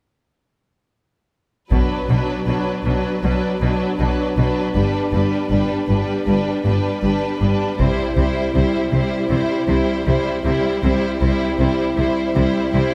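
A moderate scoring-stage reverb gives this heroic, dramatic cinematic excerpt a spacious, polished sound as the full ensemble enters together at 1.7 seconds and builds steadily over a Bm, G and C progression. A focused, rich section of bowed violins carries the melody with vibrato, while a second violin line adds a soft-attacked, expressive layer beneath it. The violas sit close and warm in the accompaniment, colouring their bowed lines with portamento, and a dark French horn section holds sustained chords in a classical style. Lush cellos, set slightly in the background, and even, smooth double basses anchor the bass together. A taiko ensemble struck with heavy sticks in a live room punctuates the build in two bursts, the second arriving at 7.8 seconds, before the strings and horns carry on to the end of the excerpt.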